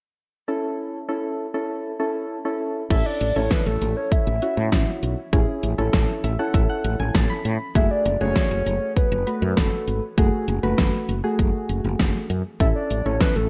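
Punchy, gated-reverb pop drums with a fat snare and bright hats drive this melancholic, nocturnal synth-pop excerpt at 99 BPM, arriving at 2.9 s alongside a growly, woody fretless bass and a round, octave-layered synth lead treated with chorus, phaser and delay. Before them, soft electric-piano-like synth keys with chorus open alone from 0.5 s over an A chord, then play a fill from 5.9 to 7.8 s that leads into F#madd9, before the harmony returns to A at 12.6 s. The bright, 1980s-style digital production sits in light reverb and digital ambience.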